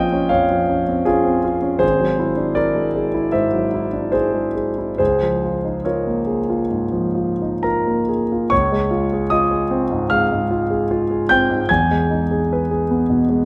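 Luminous and serene, this impressionist solo piano piece drifts in Db lydian with a rubato feel, its tempo moving between 62 and 82 BPM. A clear concert grand, intimate and up front with audible action noise and deep bass, spans a broad register through colorful harmonies such as Bbm9, Abaug7 and Dbmaj7, closing on an Emaj7 at 11.7 seconds. A wet recital-hall reverb surrounds the polished, present tone, and this short passage, cut from a longer piece, repeats its opening section at 8.5 seconds.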